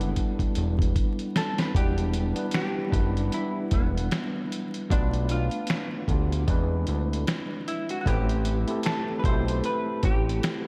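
A dreamy, reverb-soaked mix with vinyl crackle and a long cathedral tail frames this melancholic, nostalgic lo-fi hip hop piece at 76 BPM in E minor, with a swung 16th-note feel over Em7, Bm7b5, E7b13 and Am9. A gritty, compressed sampler-style soul kit with a thumpy kick, fat snare, hi-hat and finger snaps sits up front and opens with a fill from 0.2 to 1.7 seconds, beside a thick, detuned analog bass with a filter sweep. A worn, slightly out-of-tune, lightly overdriven tine electric piano carries the accompaniment, while a dark, clean hollow-body jazz guitar picks the melody through chorus and delay.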